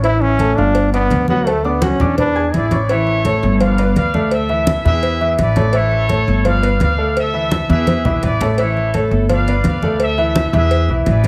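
A moderate large-studio reverb surrounds this festive, joyful salsa excerpt, where a bright, up-front trombone with vibrato, slapback echo and plate reverb carries the opening melody until 2.8 seconds. A warm, tight vintage trumpet section with vibrato and plate reverb takes over the tune from 2.6 seconds. Underneath sit a clear, worn baby grand piano, a woody, thumpy pizzicato upright bass, low-tuned congas with thick skins and a close, dry, high-tuned cowbell, with a drum fill arriving at 7.7 seconds.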